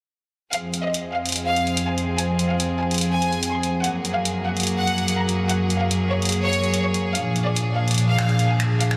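A dreamy, reverb-soaked mix with a cathedral-like wash opens this brief cut from a longer piece of heavy wobble dubstep, aggressive and weighty in a half-time feel. A rich, earthy chamber string section sits up front with bowed sustained chords through a low-pass filter, while a bright, biting violin section carries an intense melody with light vibrato and analog delay, both playing from 0.5 to 9.0 seconds over Fm, Gbadd9 and Bb7. A layered electronic drum kit, re-recorded in a large room, adds finger snaps and hi-hat beneath them.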